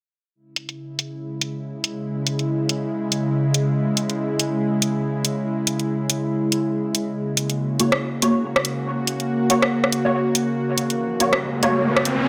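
Overdriven, up-front garage drums, with low-passed hats and snare and a filter sweep across the kit, drive this meditative, heavy deep dubstep excerpt at 141 BPM in a swung half-time feel in C# dorian, over a tense, string-like, wave-folded drone with slow attack and vibrato sustaining chords from C#m to F#, while muted, detuned dub chord stabs with phaser, chorus and dub echo enter at 7.8 seconds and an electronic riser arrives at 11.0 seconds, inside a wet echo-chamber space.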